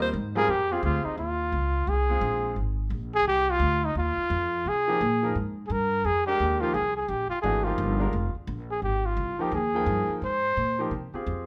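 A swung eighth-note feel in 4/4 drives this short cut from a longer modal jazz piece, its mood cool and spiritual as it rests on a single Fm7 chord. The upright bass plays pizzicato throughout, woody and warm with the bite of steel strings, sitting up front in the mix. A breathy trumpet carries the solo melody in a mellow jazz style, its scooped notes and smooth top placed up front. The clear baby grand piano supplies intimate accompaniment with audible action noise and a natural tone, dropping out at 2.6 seconds and returning at 4.9 seconds. Light reverb gives the group a modest sense of room.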